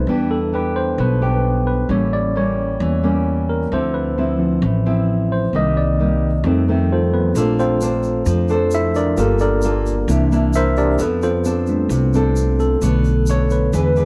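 A dry, dark and intimate production frames this smooth bossa nova in A minor at 132 BPM, cut from a longer piece, where a clean tine electric piano heard through its built-in speakers takes the solo up front over thumb-plucked, fresh-stringed classical nylon-string guitar, a woody pizzicato upright bass and, from 7.4 seconds, a grainy, band-limited vintage egg shaker, all moving through jazzy changes such as Em7, A7b9, Dm9, Bbmaj9 and F6.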